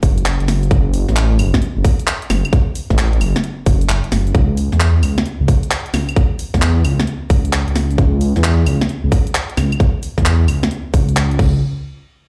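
Bouncy and skippy, this two-step UK garage excerpt at 132 BPM in C# minor opens on a drop through its first 4.3 seconds, with an up-front, rumbling detuned saw bass gritty with tube saturation, a tight electronic kick, and a layered garage kit of cracking snare, warm hi-hats, shaker, handclaps, claves and crash cymbal swinging on the 16ths, all heard as if played through a big sound system in a bare room with large studio reverb.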